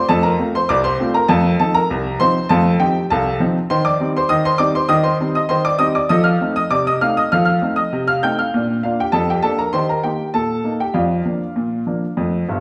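A clear, woody upright piano plays alone, slightly detuned and up front, in a lively, cheerful ragtime in a straight 2/4. The chords shift from F through F7 to Cm/Eb, then settle toward Bb around 8.5 s before closing on Bb/F at 11.0 s in this short excerpt from a longer piece. A wet, large studio reverb surrounds the instrument, giving the sense of a live performance captured in one room.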